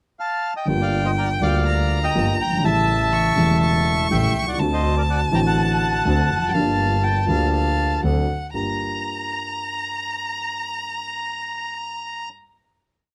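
Over a rubato 4/4 pulse, the dark upright piano and the bowed double bass beat out a tango rhythm of uneven groups of three and two eighths, giving this short, complete piece a passionate, sultry pull. The bandoneon opens alone with a pickup at 0.2 seconds, then carries a motif-based melody in period phrases, partly doubled in thirds, its reedy, vintage, band-limited tone sitting up front. From 0.7 seconds the violin joins with a focused, vibrato-laden counter-melody high above, while the piano's mellow, woody, slightly boxy voicings fill the low and middle registers. The bass adds an earthy, nasal, boxy bottom with an airy bow until 8.7 seconds, after which the others hold a final minor chord to the close. Close, detailed microphones and very little reverb keep every part intimate.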